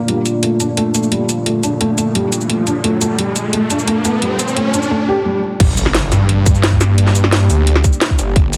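Dark and mechanical, this short cut from a longer dark technical drum and bass track builds tension before crashing into a heavy drop. A deep, moody pad holds sustained chords throughout, its detuned sawtooth layers thickened with chorus and reverb and pumping against the beat, while a felt-muted upright piano plays soft, intimate arpeggios with audible action noise and tape echo until 5.4 seconds. The drum kit sits up front with a cracking snare, metallic hats, shaker and crash cymbal, and a riser builds underneath before an impact lands at the drop. At 5.6 seconds a snarling, distorted saw bass and a tight electronic kick drum arrive, the growling bass aggressive and compressed at the front of the mix. The whole sound is set in a moderate, lush hall reverb yet squeezed into a heavily compressed, radio-like finish.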